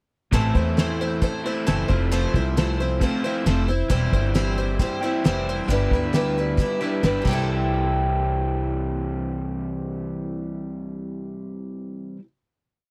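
From the first moment, a shimmering, octave-doubled twelve-string acoustic guitar strums eighths in open chord shapes alongside a crunchy, double-tracked overdriven electric guitar with ringing chords, a woody pizzicato upright bass playing a dotted figure, and a cloth-damped, thuddy drum kit with a fat snare, tight kick and dark cymbals. This short, hopeful folk and heartland rock piece moves at 135 BPM in C major, running from Am through Fmaj7, C/E and G6. A drum fill at 7.2 seconds leads into a final C6 hit that rings until 11.0 seconds, all captured in a dry, close 1970s-style studio sound.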